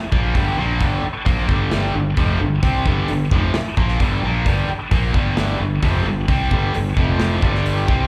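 This short excerpt of a live club gig comes through the venue's PA, with the band heard fairly dry despite a touch of club reverb. It is menacing, heavy hard rock in G minor at 131 BPM in a straight 4/4, and all three parts play together from the opening moment to the close at about 8 seconds. Up front, a tight, bright, double-tracked electric guitar drives a picked, distorted riff in its low-to-middle register, with a short slapback echo. Beneath it, a fingered electric bass growls with overdriven fuzz, punchy and low. The acoustic drum kit sounds airy and polished, with a punchy kick, a medium-tuned snare and hi-hat, while the harmony rests on G minor before moving to F5 at 7.0 seconds and G5 at 7.4 seconds.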